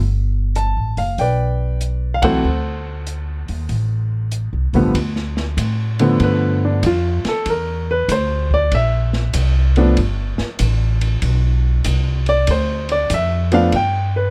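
Relaxed and sophisticated, this jazz piano trio swings its eighth notes at 96 BPM in 4/4, moving through a G mixolydian colour with chords such as Gadd9, D7, G9 and C9. The upright bass opens alone, plucked, woody, warm and up front, with steel strings. The clear baby grand piano and an open jazz drum kit join at 0.6 seconds, the piano sounding natural with short sustain and sitting up front beside the bass. The drums stay further back, a dark, smooth kit with a boomy kick, a medium-tuned snare, hi-hat and ride cymbal, their top end rolled off in a small-room sound. After a brief band accent at 2.1 seconds, the piano takes a solo from 5.0 seconds onward, ranging from G2 to A5 over the changing harmony before the passage cuts off at 14.3 seconds. Close, detailed microphones and little reverb keep the whole trio intimate and dry, and the recording is a fragment of a longer piece.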